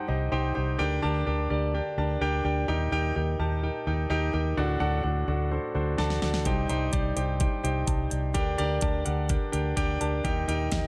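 Piano-driven pop in G harmonic minor at 127 BPM, earnest and driving, this short excerpt opens on a clear, intimate concert grand with audible action noise and deep bass, joined almost at once by a dark, foam-muted, round electric bass, before a pop drum kit with a knocking kick, fat snare and metallic hats enters with a fill at 6.0 seconds, all over a cycle of Cm, Gm/D, Eb and D in digital ambience.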